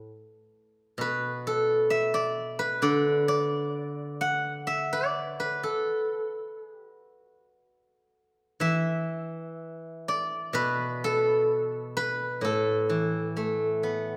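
A reverberant recital hall surrounds this short recording, its 1.4-second decay giving the solo instrument a spacious, church-like bloom. The piece is Chinese traditional music for solo plucked strings: a steel-string zither, played with fingerpicks, carries everything from 0.0 to 14.2 seconds. It sits up front with a bright, silvery, ringing tone and spans from A2 up to F#5. The mood is elegant and flowing, moving at around 63 BPM in 4/4, though the rubato and uneven beats make the pulse feel free and breathing. Set in the A zhi mode and tuned to A4 = 438 Hz, the passage shifts into a new section at 8.6 seconds before being cut off from the longer work.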